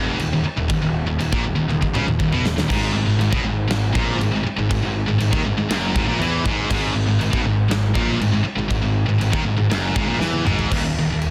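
A scooped, high-gain guitar riff sits up front in this dark, relentless heavy metal excerpt at 120 BPM, backed by a bright distorted guitar in the background and a growly, overdriven fuzz bass, while a punchy, big-room acoustic drum kit with china and crash cymbals enters at 0.2 s and plays fills at 1.7 s and 10.2 s over Eb5 and Ab5 chords, in a dense, heavily limited, nearly dry modern mix.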